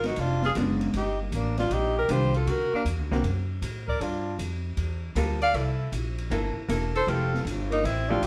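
Captured live in one room with a wet studio reverb, this cool, swinging fragment of small-group jazz in D minor moves at 157 BPM. A clear alto saxophone carries the melody with vibrato, while a breathy tenor saxophone with subtone and scooped notes plays an intimate second line beneath it. A woody, thumpy pizzicato upright bass sits up front, and a dark, clean, compressed hollow-body electric guitar comps from 0.6 s. The softer drum kit adds dark cymbals and a boomy kick as the changes run from Bb7b9 through Gm9 to Fmaj9.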